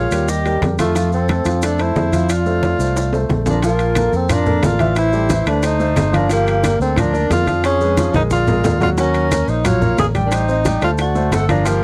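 This lively, danceable Afro-Cuban jazz excerpt opens with a mellow tenor saxophone carrying the melody in a breathy subtone with vibrato and scooped notes, while a tongued, straight-toned flute plays a second line in the background over a warm grand piano and a punchy, amped fingered bass up front. Percussion joins at 0.1 seconds: thick-skinned, low-tuned congas, very quiet round bongos, ringing metal-shell timbales and grainy, distant maracas, with drum fills at 2.6 and 8.1 seconds. The harmony turns to a new section at 3.6 seconds, moving through jazzy seventh and ninth chords, all captured in a dry, gritty recording with light reverb.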